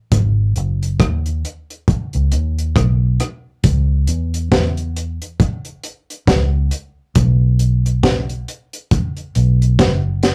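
A round, foam-muted electric bass with a vintage, amped character sits up front in this short lovers rock reggae cut, playing fingered lines between F#1 and E2 in C# minor. Beside it, an acoustic reggae drum kit with a dry, rolled-off top provides a tight kick, a high-tuned snare, rim clicks and hi-hat, also placed up front. The tempo is a relaxed 68 BPM in 4/4 with a 59% swing on the sixteenths, giving a smooth, longing mood. Both parts play together from 0.1 s to 10.3 s, the bass sounding dark and punchy, and the arrangement moves into a new section at 3.6 s. A moderate small-room reverb and a rough rehearsal-room sound frame the pair, and the clip is cut from a longer piece.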